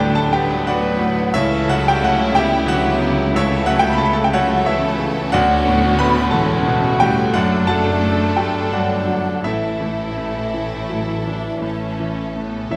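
A clear, intimate grand piano carries the melody up front from the first moment, its action noise audible, as a lyrical, lush classical passage in a rubato 12/8 unfolds around it: a smooth violin section also sings the melody in the background, a soft-attacked, expressive second violin section with vibrato and a hollow, airy flute ensemble trace a second line, a rich viola section and a vintage-toned bassoon fill in the accompaniment, a mellow, tight French horn section holds sustained chords, and a dark tuba, a distant cello section and a warm double bass section with portamento anchor the bass, all heard in a moderate scoring-stage reverb.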